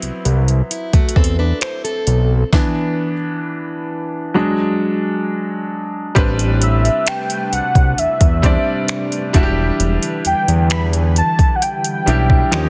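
A bright, brilliant baby grand piano sits up front in this sensual, moody contemporary R&B excerpt at 66 BPM in A dorian, with the piano featured through the first 6.2 seconds over rootless, extended chords and a stop in the groove from 2.5 seconds. Beneath it, a fat, nasal analog bass built from detuned, saturated sawtooth and square waves holds the low end, while an electronic R&B kit with a soft kick, metallic hats, finger snaps and a tape-warm, softly clipped snare drives a straight 4/4 feel. A picked, plugged-in steel-string acoustic guitar adds brief arpeggios with delay and a touch of finger squeak near the start. A very quiet, dark pluck texture enters at 6.2 seconds, and from 6.6 seconds a velvety synth lead carries the melody with chorus, delay and vibrato, followed at 7.0 seconds by a glassy FM pad whose mellow sustained chords pump in the background under ensemble chorus and reverb. 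The mix is dense and heavily limited, with a digital ambience around the parts.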